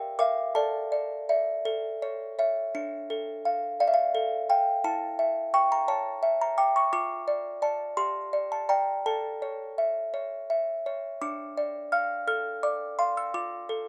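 A classical lullaby for solo music box in D minor, this eerie, wistful fragment of a longer piece drifts in a rubato 6/8 at 57 BPM, its delicate, tinkling plucked tones from a small, slightly out-of-tune box sitting up front and close in light reverb, as a brief opening phrase gives way at 2.7 seconds to a longer passage that runs to 13.9 seconds.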